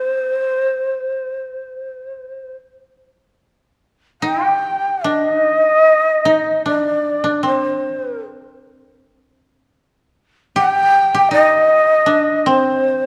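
Rubato in 4/4 at roughly 68-78 BPM, this austere, solitary fragment of Japanese chamber music in C hirajoshi sets a breathy, end-blown bamboo shakuhachi melody with soft, chiffy attacks and unsteady vibrato over a dry, woody fingerpicked koto second line, both up front, moving into a new section at 3.4 s within a dark, moderately reverberant concert-hall sound.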